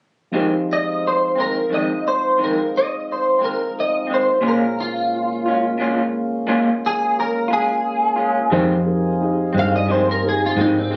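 Blues in a slow 12/8 at 59 BPM in F minor, brooding and smoky, moving from Fm7 to Bbm7 and back. A slightly broken-up lead guitar through a small old amp carries the melody with ensemble chorus, while a second amped guitar with tremolo, a slow-rotary tonewheel organ holding sustained chords, and a dark, mellow grand piano in the background fill out the accompaniment. A round, foam-muted electric bass punches in up front at 8.5 seconds, and the whole excerpt sounds like a phone recording made in a club with light reverb.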